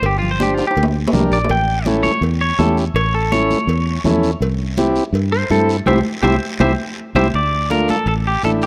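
Danceable and fiery, this cumbia excerpt puts a twangy, compressed clean electric guitar up front, soloing through spring reverb and slapback echo until 7.3 seconds, over a round, foam-muted fingered electric bass, a mellow vintage combo organ that enters at 0.4 seconds, bright high-tuned congas set back in the distance, ringing cowbell and timbales, and a raspy guiro, with drum fills at 0.6 and 5.9 seconds and a full-band accent arriving at 5.9 seconds in a dry, close 1970s-style studio recording.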